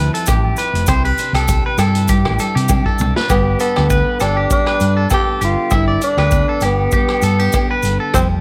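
A growling tenor saxophone takes the lead at 3.3 s, dark, breathy and raspy with vibrato and scooped notes, up front over a sunny, danceable highlife guitar band groove in G mixolydian at 99 BPM with a swung 16th feel. Beneath it, a round, hollow-body electric bass sits up front, a twangy, slightly broken-up electric guitar plays arpeggios through tape echo, and a picked steel-string acoustic guitar plays accompaniment in the background as the chords move from Fadd9 to Csus2 and on to Gadd9. A punchy vintage drum kit with a rolled-off top plays a fill from 2.7 to 3.3 s, while ringing agogo bells and grainy maracas add close, dry percussion, all in light reverb in this short cut from a longer piece.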